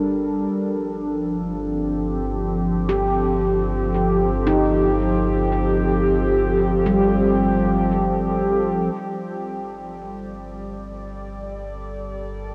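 A straight 4/4 pulse moves slowly beneath this reflective, serene ambient excerpt, cut from a longer piece, as it drifts between Gm and Fadd9/G. Up front, a detuned, warbling tape-like pad holds sustained chords with chorus, phaser and its own reverb; its filter sweeps until 9.0 s, after which it fades in. Beneath it a round sine sub bass sustains, and a ringing handpan, played with soft fingertips through tape echo, spins meditative arpeggios from 2.9 s to 9.2 s. The whole recording sits in a huge, wet reverb and carries the worn, warbly pitch drift of old cassette tape.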